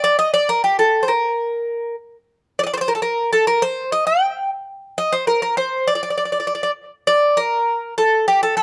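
Greek folk fragment at 100 BPM in 2/4 with a straight, cool and brooding feel: a lone acoustic bouzouki, picked and up front, plays between G4 and G5 across its 8.6 seconds, its metallic, double-strung tone carrying some octave-doubled courses, moving into a new section at 7.1 seconds, all captured dry in the open air.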